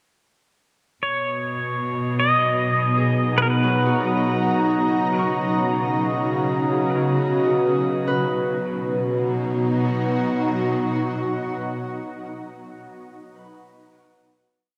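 Steeped in a cavernous cathedral reverb and the soft grain of cassette tape, this serene ambient piece in B major drifts at 51 BPM in 3/4, as an up-front, twangy pedal steel guitar traces a free slide melody with volume swells over a bright, warbling pad, while a bowed cello section holds a sul tasto root and fades out, a resonant sawtooth drone with moving overtones and a pure, glassy harmonica fade in, and a ringing Celtic harp loops its arpeggios in the background before the piece settles on a final B chord at 8.1 seconds.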